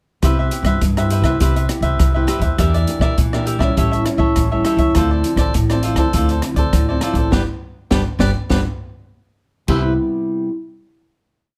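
A dry, closely miked recording brings out every detail of this festive, playful samba and choro piece in C major at 102 BPM, with the open jazz kit sitting up front in a studio room: a high-tuned snare, boomy kick, hi-hat, rim click and china cymbal drive a samba groove. A woody, thumpy upright bass with gut strings plays a pizzicato samba figure, while a crisp cavaquinho strums in sixteenths and a small-sounding nylon-string guitar mixes thumb bass with syncopated plucked chords, its finger squeaks audible. The harmony moves through Cmaj7, Em7b5, A7 and Dm9 to a G chord, where the band accents together from 7.3 seconds before settling on a final Cmaj7 that the guitar holds until 10.5 seconds.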